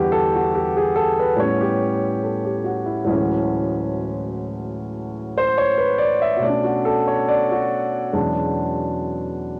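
A warm grand piano carries this short solo jazz passage on its own from 0.0 to 9.6 seconds, sitting up front with long sustain and a cassette-tape coloring. The mood is playful and relaxed, with a swung feel and rubato phrasing, so the time breathes freely. Its range spans from D2 up to E5, voicing lush extended chords that move from Em9 through A9 and Dmaj9#11 to Bm9 before settling on E13 at 8.1 seconds. Light reverb and a hint of studio ambience surround the instrument, giving the home cassette recording an intimate, lived-in character. The passage is cut from a longer piece.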